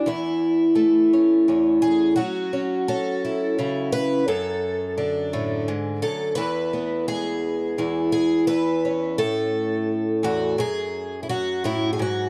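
A dry, close studio sound with light reverb and small-room ambience frames this nostalgic, hopeful folk fragment in a steady, straight 6/8, where a single picked twelve-string acoustic guitar, bright and shimmering with fresh strings and octave-doubled sparkle, sits up front alone from start to finish, moving through A/E, F#m7, D/F#, E and back toward F#m across its range from E2 to B4.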